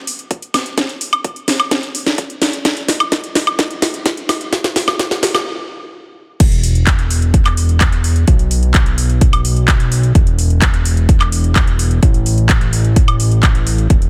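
Euphoric and triumphant, this festival progressive house passage, cut from a longer piece, drives along at 128 BPM in a straight four. It opens with a build-up carried by a layered house drum kit, where a cracking snare, metallic hi-hats, handclaps, woodblock and crash cymbal run through a drum fill until 5.5 seconds, joined by a punchy electronic kick. A brief stop follows before the drop lands at 6.4 seconds, bringing in a fat analog bass that sits between E1 and B1. That bass blends sawtooth, square and sine tones, detuned and wave-folded, with a saturated filter pluck, fast attack and sustained, mellow body, all pumping under sidechain compression. Both drum parts carry a tape-toned character from being re-recorded in a small room, with high-pass filtering on the kick, while the drums and bass all sit up front inside a light reverb.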